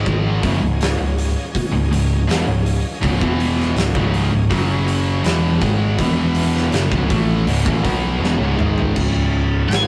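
A growly, overdriven picked bass underpins this sludgy, heavy stoner and doom metal passage. Beside it, an oversized low-tuned drum kit with a boomy kick and dark cymbals sits up front and breaks into a fill at 8.2 seconds. Two thick fuzz guitars lurk in the background and a tight, double-tracked distorted guitar adds a bright edge to the riff over C#m, F#5 and E5 chords, while a very quiet tonewheel organ with key click and slow rotary holds sustained chords. A dark octave-fuzz lead guitar sounds a single note at 9.7 seconds, and the whole take carries the rough, saturated feel of a small rehearsal room.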